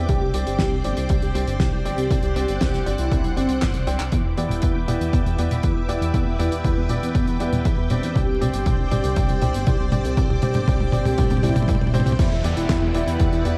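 A punchy electronic kick drum, re-recorded in a large room, drives this melodramatic, bittersweet italo disco cut at 119 BPM in E minor, alongside a damped 70s drum kit with a fat snare, dark cymbals, handclaps, hi-hat and toms. Beneath it, a glossy, chorused synth bass uses pulse-width modulation and a plucky filter to hold the low end. A mellow synth brass carries the melody in a round, detuned tone, colored by chorus, phaser and tape echo. A lush vintage string machine sustains bright, full chords with a sub octave, while a grand piano with short sustain adds stabs over a Csus2 to Em7 progression. A drum fill and a filter sweep push through the middle, and a background downlifter enters at 12.2 seconds, all set in a dark production with hall reverb and vinyl crackle.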